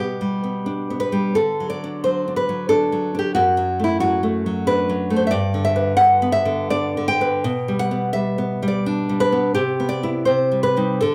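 A flowing three-beat rubato pulse carries this romantic piece for solo classical guitar, a short, sunny passage cut from a longer work. The fingerpicked nylon-string guitar sits up front with a bright, acoustic tone, moving through gentle major-key harmonies before turning to a Cmaj7 at 9.5 seconds and then a darker C minor at 10.3 seconds. A moderate large-studio reverb gives the live performance a sense of open space.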